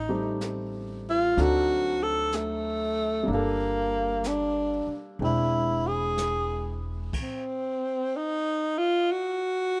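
Melancholic and smoky, this slow swung jazz ballad fragment is led by a breathy, whispered tenor saxophone, played close and up front with subtone, light vibrato and scooped notes. A woody pizzicato upright bass, a warm baby grand piano and a brushed drum kit with dark cymbals and a boomy kick move through minor, altered chords in a small, lightly reverberant room. The rhythm section falls away by 7.6 seconds, leaving the intimate saxophone alone until 9.8 seconds.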